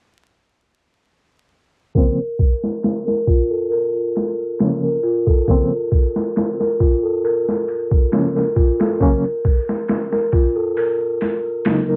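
A barky, reedy electric piano and a delicate, bell-like celesta enter together at 1.9 seconds, the piano lightly overdriven through its built-in speakers with tremolo and tape echo, and the celesta playing soft, sweet arpeggios with its soft felt hammers through a low-pass filter and its own tape echo. A moment later a sampler-style boom bap drum kit comes in, compressed, pitched down and gritty, with a thumpy kick, a high-tuned snare and hi-hats, overdriven and softened by low-pass filters and small room ambience on a cassette tape. This dark, hypnotic trip hop piece moves at an unhurried, straight pace, and all three parts sit up front in the mix. A filter sweep runs across the celesta and the whole track from 2.0 seconds onward, while the harmony rests on Bbm before shifting to Gb at 9.0 seconds. Light reverb, vinyl crackle and a low-pass filter give the home cassette recording a hazy, lo-fi character in this short section cut from a longer piece.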